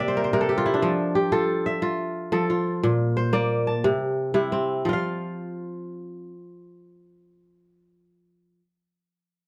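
West African traditional music in a straight 12/8, flowing and hypnotic, played on a solo kora that sits up front with a warm, crisp, ringing, fingerpicked tone. The piece opens with a brief kora fill before settling into chords moving from F through Bb to C, then shifting into a second section at 4.8 seconds. A small room's moderate reverb gives the acoustic strings a touch of space in this short fragment cut from a longer performance.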